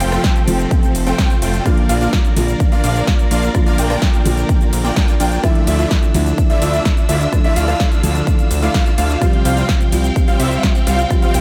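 A punchy, up-front kick and a fat, saturated analog bass drive this emotional, euphoric festival progressive house excerpt at 127 BPM in D minor, where a bright detuned supersaw stab riff with lush chorus and a catchy, mellow plucky unison lead arpeggio sit over a felt-muted upright piano with 12-bit sampler grit and audible action noise, background bowed strings sustaining chords, and a big-room dance kit of punchy snare, metallic hats, ride, rim click and shaker, all but the drums pumping to the sidechain through a progression of F, Bb, Dmadd9 and Csus4.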